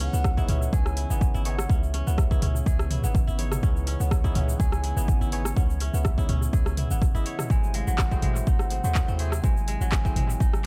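Opening at once on a dry, echo-heavy afro house groove, this driving, earthy excerpt sets a soft-attack bamboo bass bansuri melody with vibrato in the background over bright, fingerpicked kora arpeggios, barky tine electric piano stabs, a very quiet, warbling analog pad of detuned chords moving from C#m9 to G#7b9b13 at 7.5 seconds, a deep, boomy 808-style bass with sidechain pumping, and an overdriven deep house kit of metallic hats, handclaps, rim click, shaker and toms, with an up-front electronic kick entering at 0.2 seconds.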